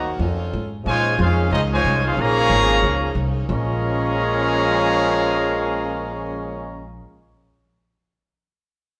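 Swung eighths drive this short big band swing cut at a brisk 183 BPM in 4/4, with an upright bass plucked pizzicato on gut strings, its woody, thumpy tone placed up front. In Bb minor, the mood is sultry and swinging as the trumpet section carries the melody with a warm, present ensemble sound. Beneath it, a clear trombone section plays a tight second line with vibrato, set back in the room, while the saxophone section holds soft-attacked sustained chords with vibrato in the background. The harmony moves from F7alt to Bbm11, then settles on Bbm7 as a new section begins at 3.5 s. A moderate large-studio reverb gives the horns an open, roomy feel across the roughly seven seconds of this fragment from a longer piece.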